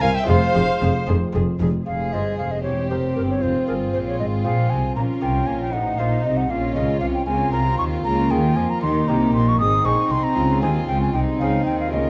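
In a straight 6/8 at 78 BPM, counted in dotted quarters, this festive, lively baroque-style concerto passage, cut from a longer piece, opens in F minor and turns to Ab major at 8.0 s. An airy, crisp-attacked wooden baroque flute carries the melody up front, joined on that melody by a violin section that is set in the background. A second violin section with light vibrato supplies a second line, a nasal, dark viola section and a delicate fingerpicked lute with doubled gut strings fill in the accompaniment, and a close cello section joins a prominent double bass section on a reedy, gut-strung period bass, all in a moderate recital-hall ambience captured with close, detailed microphones.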